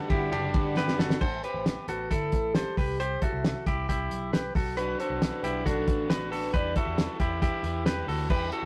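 A straight 4/4 pulse at 135 BPM drives this breezy, nostalgic jangly indie pop piece, where a cloth-damped, thuddy drum kit with a fat snare sits up front beside a bright, twangy clean electric guitar playing arpeggios, a round, foam-muted picked bass joins at 0.1 seconds, a soft octave-layered synth lead with chorus and analog delay carries the melody until 7.2 seconds, a crunchy overdriven guitar drops out briefly before returning, and very quiet analog keys and a hollow, flute-like pad stop at 1.2 seconds after a drum fill, all moving from Gmaj7 through Am, C, Bm and Em in a rough rehearsal-room sound with tube saturation.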